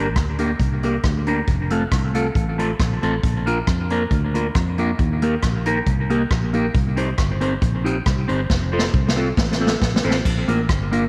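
Ska at 137 BPM in Bb major, this joyful, bouncy excerpt cut from a longer piece sets a mellow, clean electric guitar up front with phaser and tape echo over a round, foam-muted fingered bass and a vintage brush kit with dark cymbals and a rolled-off top, moving from Gm through F, Bb, Eb and Cm before a drum fill from 8.5 to 10.3 seconds lands back on Bb, all in light studio reverb.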